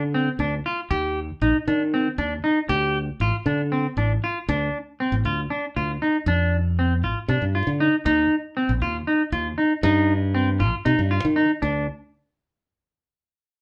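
Tense and intricate, this progressive instrumental cut from a longer piece moves in an uneven 7/8 meter with a straight feel, as a clean, up-front electric guitar spins arpeggios over a growly, punchy fingered electric bass. The harmony circles between Dm and Eb, settling on a long stretch of D minor before Eb returns at 8.1 seconds. Captured as a band playing live in one room with a moderate studio reverb, both parts drop out at 11.9 seconds, shortly after the harmony breaks off at 11.6 seconds.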